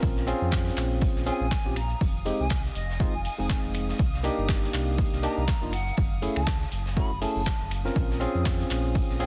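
A swung 4/4 deep house groove is driven by a punchy, overdriven analog kick up front, with a layered deep house kit of finger snaps, handclaps and metallic hats joining at 0.3 s, while a low-tuned acoustic kit with a fat, gritty snare and pumping hats sits in the background beside a grainy egg shaker. A full sine sub bass with its octave pumps under barky electric piano stabs, played through a combo amp with light overdrive, over a deep, smooth progression of Bbm9, Fm7, Cm9 and Gbm9 chords. A veiled, con sordino violin section pumps softly behind, and from 1.3 s a mellow, hollow silver flute carries the melody with vibrato and tape echo, all set in light reverb with dense limiting and vinyl crackle.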